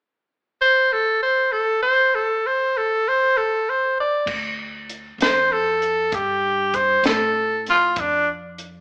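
A growling tenor saxophone opens alone at 0.6 s, its raspy, gritty jazz-style tone sitting up front as it carries the melody. This brooding, soulful slow blues moves in 12/8 with a straight feel. At 4.3 s an upright bass and a compact cocktail drum kit join under a minor chord. The pizzicato bass has a woody, steel-string sound and sits well back in the mix, while the drums are dark and smooth, with a high-tuned snare, a tight kick, hi-hat, crash cymbal and a rolled-off top. The band plays live in one room with moderate studio reverb and an AM-radio character, and this short passage is cut from a longer piece.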